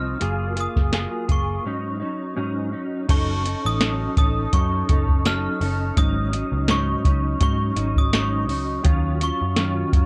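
A light reverb gives this short cut from a longer indie and bedroom pop piece a soft sense of space, and its mood is laid-back and sunny over lightly swung sixteenths in 4/4. A soft vintage rhythm box joins at 0.2 seconds and sits up front, with a deep kick, crisp snare, metallic hi-hats and a crash cymbal. Underneath, a vintage muted picked electric bass gives a round, foam-muted, amped low end. A clean, fingered electric guitar, dark and compressed and also placed up front, carries the accompaniment through an ensemble chorus and a vibrato effect. On top, a glockenspiel struck with brass mallets plays a bell-like, sparkling high melody, colored by analog chorus and analog delay. The chords move from Gbmaj9 to Ab7sus4 for a break at 1.6 seconds, then through Gbm6 and Ab7sus4 before settling on Ebm9 at 8.8 seconds.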